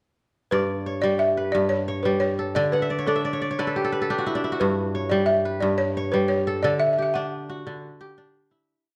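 This is West African traditional music for string and xylophone, a complete short piece with a flowing, warm mood in G lydian. It moves in a straight 12/8 at 118 BPM, counted in dotted quarters, and is tuned slightly below standard pitch at A4 = 438 Hz. The acoustic kora sits up front, fingerpicked in a ringing, crisp interlocking ostinato across a broad range, with fast runs and a fill at 2.7 seconds. Beside it, the balafon carries the melody in short, song-like phrases, its woody, dry, buzzing tone made soft and airy by rubber mallets. The harmony alternates between G and D, and a moderate recital hall reverb surrounds the pair, with some lossy compression artefacts. A fade-out begins at 6.6 seconds, the balafon stops at 7.5 seconds, and the kora rings on alone to close the piece.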